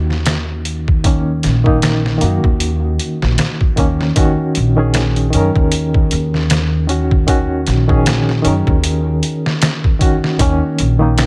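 A gritty, sampler-style trip hop drum kit sits up front in this brooding, hypnotic piece, its thumpy kick, medium-tuned snare and hi-hat sounding compressed, pitched down and tape-warm. The drums arrive at 0.1 s over a slow 77 BPM pulse in 4/4 with a swung sixteenth-note feel. Beneath them, a woody pizzicato upright bass with steel strings and a touch of tube saturation holds the low end in Eb minor. A reedy, clean electric piano, heard through its built-in speakers and placed up front, carries the accompaniment with tremolo and tape echo, moving from Gb6 to Ebm7 at 4.2 s before settling on a rootless Gb6 at 10.4 s. The room is dry with little reverb, and the whole passage is cut from a longer piece.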